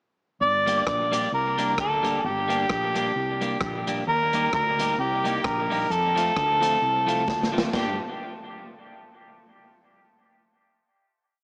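A mellow, up-front harmonica with scooped notes and dub echo leads this short, driving and energetic ska piece with swung motif-based phrases over a Gm, Eb and F progression, backed by a growly walking line with slides on woody fretless electric bass, an off-beat chop on slightly broken-up electric guitar soaked in spring reverb, plate reverb and dub echo, and a swinging big-band drum kit with a punchy kick, side-stick backbeat, hi-hat and crash, whose fill at 7.3 s leads into a final chord at 7.7 s, all heard through a small-speaker sound in a moderate club reverb.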